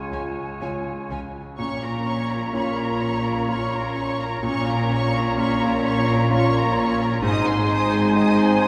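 A bright flute group, a clear oboe, a very quiet dark clarinet, a background grand piano with audible action noise and dark French horns holding sustained chords open this sorrowful, longing cinematic excerpt in a rubato 3/4, joined at 0.1 s by a lush violin section carrying the vibrato-laden melody over a second violin line, very quiet violas, smooth cellos and expressive double basses, all moving from C# to A#m and settling on G# at 7.2 s in a reverberant concert hall.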